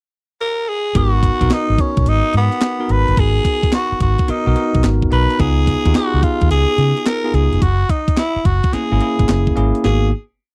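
A dry, close 1970s-style studio sound frames this confident, slick new jack swing piece, where a raspy, gritty tenor saxophone with slapback echo carries a motif-based melody from 0.4 seconds over syncopated chord stabs on a bell-like tine electric piano, a dark, foam-muted fingered electric bass with ghost notes and chromatic approach notes, and a hard-swung 12-bit drum machine with thumpy kick, hi-hat and snare layered with handclaps, before the band settles on a final chord at 9.8 seconds.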